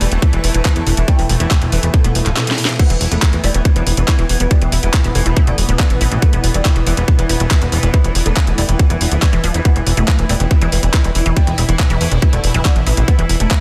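A plucky analog bass and an oud open this psychedelic trance excerpt together, with a bubbling stepped-filter texture, a garage drum kit and a granular cloud pad all sounding from the start, and the overdriven electronic kick arriving at 0.2 seconds. The mood is hypnotic and psychedelic at 140 BPM in a straight 4/4, held in one continuous section built on an E5 chord. The tight, up-front kick and the punchy, funky sawtooth-and-square bass with tube saturation drive the track, while the kit adds a cracking snare, handclaps, hi-hat and crash cymbal, with a brief drum fill at 2.4 seconds. In the background, the woody, fretless oud carries the melody through phaser, digital delay and sidechain pumping, alongside a lush, detuned unison pluck riff roughened by vintage 12-bit sampler grit. The bubbling texture steps through random resonant filter moves under chorus, the cloudy, blurred granular pad evolves very quietly up high, and a nasal, wobbling vowel-sweep bass line enters faintly at 3.4 seconds. 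The mix is dry, dense and heavily limited, with a loud, modern master.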